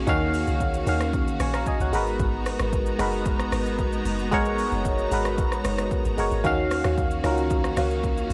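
Amapiano at 113 BPM in G# dorian with a hypnotic, deep mood, built on D#m9 and G#m9 chords where a biting, up-front FM electric piano with chorus plays over lush, clear bowed strings with vibrato, a round, dark log drum bass, and a punchy, gritty deep house kit of kick, smooth hi-hats, rim click and shaker, while a buzzing, woody marimba with analog delay adds stabs from 6.4 to 7.9 seconds in this dry hardware recording cut from a longer piece.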